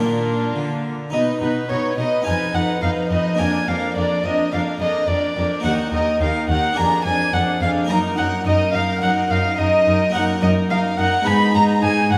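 A generous recital-hall reverb, with a decay of about 1.5 seconds, surrounds this stormy, dramatic 12.2-second passage cut from a baroque-style concerto movement in Eb minor, moving at 107 BPM in a straight 4/4. A single solo violin carries the melody from start to finish, its gut-string, period-style tone rich and reedy with light vibrato, climbing as high as Cb6. Behind it, a chamber violin section also plays a melodic line in the background with a smooth top, while a second violin section plays a close, warm second line. An up-front French-style harpsichord adds airy plucked accompaniment across two sets of strings, and a studio viola section fills out the inner harmony as a chamber cello section anchors the bass, both bowed with period gut-string character. The harmony moves through Bb, Fm7b5 and Ebm before settling on Abm near 11.3 seconds, keeping the tension taut throughout.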